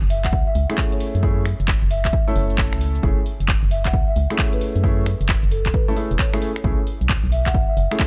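A soulful, skippy slice of two-step UK garage at 133 BPM in 4/4, with a 64% 16th-note swing giving the groove its bounce, cut from a longer piece in F# minor. An organ-like FM bass anchors the low end from the first moment, hollow and dark with a fast, percussive attack that then decays. A layered house kit of finger snaps, handclaps and warm hi-hats comes in at 0.1 seconds, joined at 0.2 seconds by a punchy, tape-warm electronic kick. A marimba played with soft mallets carries the melody in a round, warm tone, while a clear grand piano adds intimate, slightly boxy stabs from 0.7 seconds, its action noise audible up close. The harmony rests on F#m9 before shifting to B13sus4 at 6.4 seconds, all captured in a dry, gritty hardware sound with little reverb.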